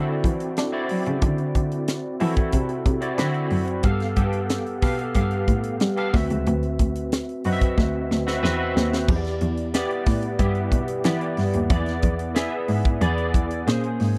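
A dry, close studio sound frames this slick, nocturnal piece of polished 1980s jazz-funk pop, cut from a longer work, in a straight 4/4 groove. A barky, gritty overdriven tine electric piano, played through a combo amp with ensemble chorus, sits up front with the chords, while a single bowed cello carries the bass line with a rich, nasal tone, soft attack, vibrato and expressive portamento. A tight, airy funk kit with a high-tuned snare joins at 0.2 s, plays a drum fill from 7.8 s, and leads into a new section at 9.1 s.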